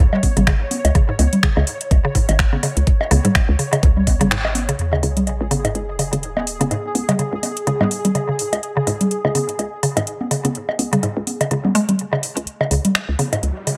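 A quirky, hypnotic minimal techno excerpt opens on a woody, nasal mallet-like synth pluck riff with chorus and delay over a hollow, bouncy FM bass and a faint detuned pulsing gated texture, all pumping against an up-front knocking electronic kick that drops out just before a break and band accent at 4.3 seconds, while overdriven bongos and congas and a garage kit of finger snaps and metallic hats carry on through an impact at 4.8 seconds, a filter sweep on the synth, and a closing build-up with a riser at 13.0 seconds.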